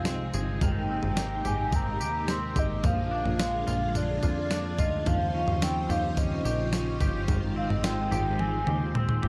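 Dream pop at 108 BPM in Ab major, this floating, dreamy excerpt sets a hollow, woody synth lead with vibrato, chorus and delay singing a melody over lush string-machine chords and twangy guitar arpeggios soaked in chorus and delay. A plucky, punchy analog bass and a clean 12-bit drum machine with thumpy kick, fat snare, tambourine and toms carry the groove, with a drum fill from 8.4 seconds. The chords move from Fm7 through Abmaj9, Bb7 and Eb13 to Abmaj7, in a dark production with light reverb and lossy compression artefacts.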